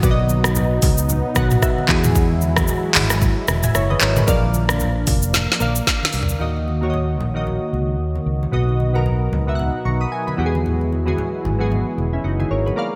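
A romantic, joyful afrobeats groove opens with everything together at 113 BPM in a swung 4/4: glassy, wave-folded digital keys sit up front with a filter sweep and chorus, over a soft, detuned sawtooth pad that lingers mellow in the background. A fingered electric bass adds a dark, round, amped low end, while an electronic afro-pop kit brings a deep kick, woody snare, dark hats, handclaps, shaker, rim clicks and toms, all bathed in gated reverb. Very quiet low-tuned congas, played with soft hands in a small room, add a thin, bright skin tone underneath. The harmony moves through B, Eadd9 and A#, and the keys drop in a short fill before a drum fill closes the first half; the kit then stops at 6.4 seconds as the second section shifts to D#m before returning to B and Eadd9, where the keys add another short fill. The bright, 1980s-style digital production carries light reverb and digital ambience, and this excerpt ends on a break at 12.8 seconds.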